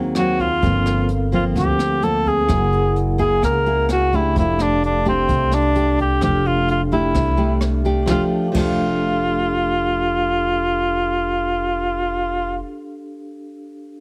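A heavily compressed, radio-like sound with light reverb frames this relaxed, romantic bossa nova in F major at 129 BPM, cut from a longer piece. A mellow cor anglais carries the melody up front with classical-style vibrato over fingerpicked nylon-string guitar with audible finger squeak, a woody pizzicato upright bass, and a close-miked vibraphone with fast motor vibrato and a metallic ring. Brushes on a small-room drum kit with dark cymbals and a punchy kick stop at 8.7 s, and the vibraphone sounds alone after the other parts end, until 14.0 s.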